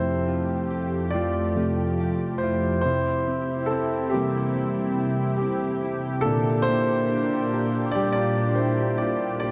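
Pop at 70 BPM in F major, emotional and hopeful, where a warm concert grand piano with deep bass and long sustain sits up front, a thick detuned sawtooth pad with chorus holds slow-attack chords beside it, and a dark, clean electric guitar plays delayed arpeggios in the background, all bathed in a dreamy hall reverb as the chords move from Fadd9 to C at 2.8 seconds and Gm/Bb at 6.2 seconds.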